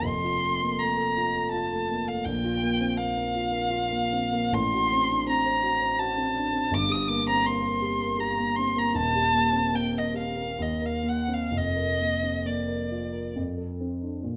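In a rubato 3/4 that moves between 63 and 85 BPM, this lyrical, tender romantic classical duo in Bb major, tuned to A4 = 445 Hz, sets a rich, smooth bowed violin melody with light vibrato up front against a dark, mellow concert grand piano accompaniment with deep bass and a vintage character. The harmony passes from F through D7/A, Gm and Eb before settling on Bb/F and returning to F, all within a single section cut from a longer piece. The violin's even line ends at 13.4 s while the piano carries on to 14.4 s, heard through close, detailed microphones in a moderate recital hall reverb.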